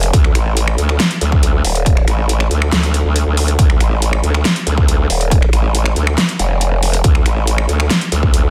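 A growling, saturated bass with chorus and overdrive wobbles up front across a range of Eb1 to D2 in D phrygian, driving this menacing, aggressive heavy wobble dubstep excerpt at 139 BPM in a half-time 4/4 feel, backed by a punchy, tape-warm electronic kick and a layered drum kit of finger snaps, metallic hats and a huge snare, all in a dry, dense, heavily limited mix.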